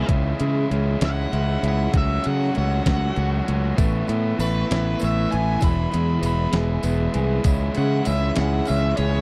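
Jangly and carefree, this short cut of indie rock rolls along in a steady 6/8. A bright, biting overdriven guitar carries the melody high up, colored by tape echo, while a picked overdriven electric guitar plays a riff underneath and solos throughout. A slightly broken-up, lo-fi guitar through a small old amp sits in the background with a fingered riff, thickened by ensemble chorus and tape echo. Up front, a growling fingered bass with overdrive anchors the low end, and a sampler-style 12-bit drum machine supplies a thumpy kick, fat snare and hi-hat with a tape-tinged, small-room character. The chords move through C#m, F#m/C#, Asus2, E and back to C#m, and a jingly acoustic tambourine joins quietly at 3.8 seconds, all captured in a dry, close 1970s-style studio sound.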